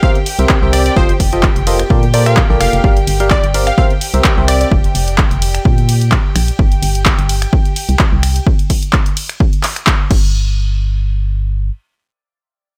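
Soulful and bittersweet, this piano house excerpt, cut from a longer piece, moves at 128 BPM in 4/4 with a light 16th-note swing and opens directly on a drop that runs to 10.3 seconds. A barking FM electric piano with a biting, percussive edge carries the riff through chorus and dub echo, while a bright, detuned unison lead with a filtered pluck and vibrato sings a catchy melody over chords moving from C7 and F7 through Bbmaj7 and Gm7; both drop away at 4.7 seconds. A chamber violin section, played sul tasto with light vibrato and a soft attack, holds intimate sustained chords that pump against the kick until 8.5 seconds. Underneath, a hollow, organ-like FM bass with tube saturation sits dark and up front, entering at 0.4 seconds and carrying on alone after the drums stop at 10.2 seconds. The overdriven electronic kick hits hard and close, joined by a dry analog drum machine playing crash, ride, hi-hat, handclaps and finger snaps, all in a dry mix with little reverb.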